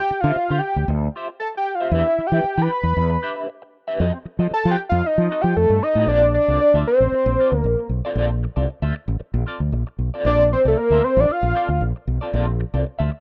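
A rough home-demo mix with digital ambience frames this driving, funky cut from a longer funk piece in straight 4/4 at 115 BPM, moving from Dm11 through Em7 and F7b9 to Bbmaj9. A fat, nasal analog lead with detuned sawtooth and square-wave layers, a sub octave and vibrato sits up front, soloing through the opening 6.1 seconds and carrying the melody until 11.8 s. Underneath, a dark, clean, picked electric guitar colored by wah and tremolo plays accompaniment, while a warm, direct-amped fretless electric bass holds the low end prominently.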